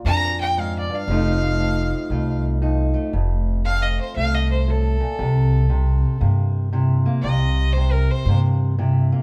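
Acoustic country blues with a laid-back, rollicking swing at 117 BPM in F mixolydian, played live in one room, its stone reverb giving the sound a wet ring. A fingerpicked parlour steel-string guitar, boxy and dark, sits up front beside a thumpy, woody pizzicato upright bass on gut strings, while a single bowed fiddle carries the melody with light vibrato, an intense tone and a smooth top. Moving through Bb7, F7 and C7, this brief cut from a longer piece runs about 9.2 seconds, with the fiddle stopping at 8.4 seconds.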